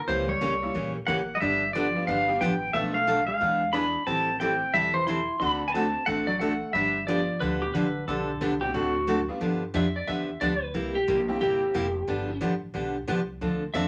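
A swung 4/4 groove drives this playful, cheerful western swing country piece, with a twangy, fingerpicked pedal steel guitar carrying the melody in volume swells over a dark hollow-body jazz guitar second line, a full-bodied picked acoustic guitar, a thumpy pizzicato upright bass and a jangly tack piano in the background. At 9.4 s an electric slide guitar solo takes over, joined from 9.8 s by a clean lap steel line, in a moderately reverberant studio.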